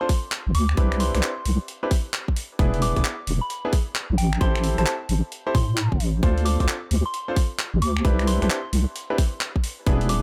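Moody and soulful, this two-step UK garage clip moves at 132 BPM in 4/4 with a swung sixteenth-note feel, set in D dorian and cut from a longer piece. A bright concert grand piano plays stabs from the opening moment, its brilliant, intimate tone carrying audible action noise and a dub echo, over chords that run from D7(no3) through Cmaj9, E7, Am7 and Dm7. An up-front electronic kick, tight and overdriven, anchors the groove alongside a gritty, compressed sampler-style kit of finger snaps, handclaps and hi-hat that sounds re-recorded in a small room. At 0.5 seconds a deep, wobbling bass enters, dark and sustained with chorus, together with a soft FM synth bell melody that sits in the background, pure and mellow, treated with chorus, phaser and dub echo. The whole clip is wrapped in a digital ambience.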